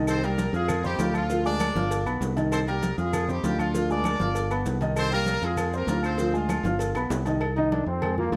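A bright horn section carries the melody in punchy octave doubling with light vibrato and a smooth top, playing until 6.9 seconds in this fiery, passionate salsa cut from a longer piece. It moves at a brisk 196 BPM in straight 4/4 and C minor, over a cycling progression of Cm7, F5, Ddim and G7 that shifts to Fm on its third pass before settling on Cm. A dark, mellow concert grand piano with deep bass supplies the accompaniment, while a round, punchy fingered electric bass sits up front. The percussion is dense: ringing metal-shell agogo bells and timbales, woody claves, damped congas played with soft hands, tight high-tuned cowbell and bongos struck with hard hands, and grainy maracas, several of them tucked in the background with a vintage, band-limited colour. After a drum fill at 7.0 seconds, a bright solo trombone with vibrato comes in up front at 7.6 seconds for a brief pop-style phrase alongside the piano, bass and percussion, and a moderate large-studio reverb gives the mix a sense of space.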